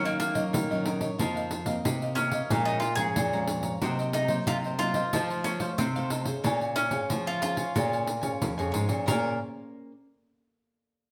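Samba and choro in a bittersweet, yearning mood, with a picked mandolin carrying the melody in a round, double-string tone while a crisp cavaquinho and a fingerpicked classical nylon-string guitar fill in the harmony. A second nylon-string guitar, thumb-plucked and warm, supplies the bass line, and a jingly pandeiro sits close and dry at the front of the mix. The band plays live together in one room with a moderate large-studio reverb, moving through minor ninth and suspended chords in a short passage cut from a longer piece.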